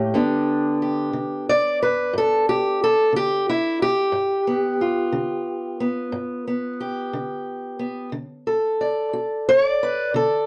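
A straight 12/8 feel drives this gritty, rollicking acoustic country blues excerpt, where a lone fingerpicked steel-string parlour guitar, dark and boxy and sitting up front in moderate studio reverb, rides a G7 chord before turning to D at 8.1 seconds.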